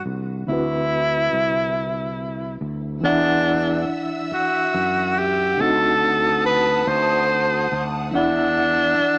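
Sultry and yearning, this fragment of a slow six-eight R&B piece moves at 47 BPM, with a breathy, whispered tenor saxophone up front carrying the melody in scooped notes and vibrato. Beneath it, a reedy electric piano shimmers with fast tremolo, and a growly, punchy fretless bass sustains low notes across chords like D13, Esus2 and D7b9. At 3.0 seconds a lush bowed string section enters high above with expressive portamento, all set in light reverb with a small-speaker character.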